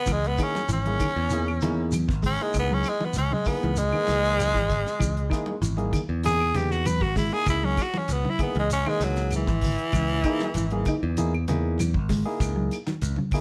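A raspy, gritty tenor saxophone solos up front with vibrato and scooped notes over a hypnotic, funky afrobeat groove at 97 BPM on a single C#m69 chord, backed by a growly, punchy picked electric bass, a damped 70s drum kit with a fat snare and tight kick, a dark, clean fingered electric guitar playing arpeggios, a barky, lightly overdriven tine electric piano, and background congas, shekere and woody claves, with the saxophone stopping at 11.1 seconds in this short cut from a longer piece.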